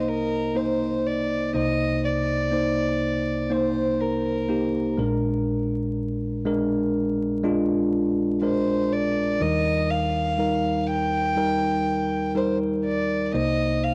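Hopeful and emotional, this short pop ballad moves at an unhurried pace in a straight four, cut from a longer piece. A bell-like tine electric piano carries the accompaniment from start to finish, its bright, clean tone sitting direct and up front while spanning a deep low register up into the middle of the keyboard. Above it, a single warm violin sings the melody with a soft attack and an airy, sul tasto bow, its pure, floating line kept close and forward and colored by a cassette tape effect. The harmony moves from Cm7 to Bb7 at 5.0 seconds and settles on Eb at 9.4 seconds before returning to Cm7 near the end. A moderate spring reverb and the homespun character of a cassette recording, dusted with vinyl crackle, give the piece an intimate, nostalgic glow.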